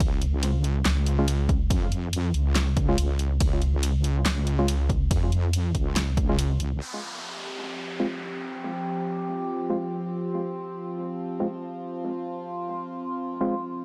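A heavy, saturated wobble bass drives the drop of this brooding, cavernous deep dubstep cut in F minor at 141 BPM with a half-time feel, pounding alongside a punchy overdriven kick and a deep house kit with a fat snare, handclaps, hi-hat and ride until the low end drops out near 6.8 s. A downlifter then sweeps in, and a wave-folded, resonant drone with moving overtones enters up front around 7.3 s, while a hollow, organ-like stab with dub echo sounds through most of the dry, gritty recording.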